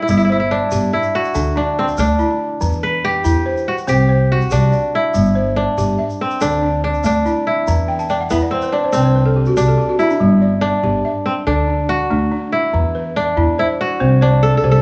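Hypnotic and joyful, this excerpt of West African string and xylophone music moves at 95 BPM in a straight 12/8 in G major, cycling through a repeating progression of G, D, E minor and C. A bright, crisp, fingerpicked kora carries the ringing melody up front while a woody, buzzing balafon played with rubber mallets spins smooth arpeggios alongside it, adding a fill from 7.9 to 10.2 seconds. A dark pizzicato upright bass with steel strings anchors the low end, a grainy, close tube shaker keeps time until 10.2 seconds, and a moderate recital hall reverb surrounds the ensemble.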